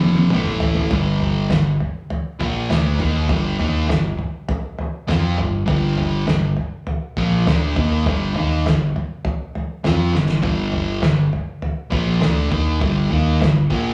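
A straight, steady 4/4 groove opens on a drum fill across kick, snare and toms from a cloth-damped kit that sounds thuddy and muffled, with a fat snare, a tight kick and a rolled-off top. This is raw, menacing garage rock from a small band playing live together in one room, cut from a longer piece. A double-tracked, picked fuzz guitar carries the riff up front, moving from an A5 chord to G minor at 0.9 seconds, where the main section takes hold. Beneath it, a fingered electric bass runs the whole way through with an overdriven, round and punchy tone. The saturated, gritty drums sit up front beside the guitar and throw in another fill at 10.1 seconds, while a moderate large-studio reverb gives the whole band a roomy glow.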